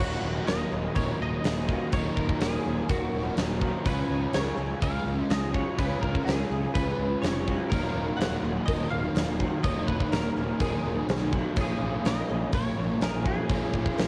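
This short excerpt has the light reverb and soft haze of a home cassette recording, which makes it hazy and brooding. It is shoegaze and dream pop with a rock backbone in a straight 4/4, moving through minor seventh and dominant seventh chords. A twangy, compressed clean electric guitar carries the melody on top, while a shimmering, octave-doubled twelve-string acoustic guitar picks arpeggios in the background, both treated with ensemble chorus and tape echo. Beneath them, two overdriven guitars play the riff: a hollow-bodied semi-hollow guitar colored by analog chorus, and a darker crunchy guitar sitting further back, bathed in reverse reverb. A round, fuzz-laden fingered bass anchors the low end, and a huge arena drum kit with a punchy kick and a pumping room sound comes in up front at 0.5 seconds, carrying on to the end at 14.1 seconds.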